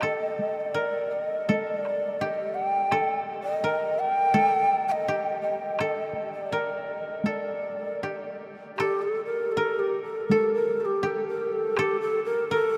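A breathy, mellow shakuhachi carries the melody up front, its end-blown bamboo tone showing vibrato, tongued attacks and a chiff, with rolled-off highs as it moves between G4 and G5. This is austere, calm Japanese chamber music in a traditional vein, set at 82 BPM in 4/4 but played with a free, rubato feel, cut from a longer piece. Beneath it, a koto played with fingerpicks supplies a dry, woody second line between G4 and Bb4, also close to the listener. A taiko ensemble struck with heavy sticks adds close, acoustic percussion until 11.9 seconds, while the shakuhachi and koto continue to 12.8 seconds. A huge, wet ambient reverb with a 9.2-second decay places the music in a vast, echoing space, and the passage shifts into a new section at 8.8 seconds.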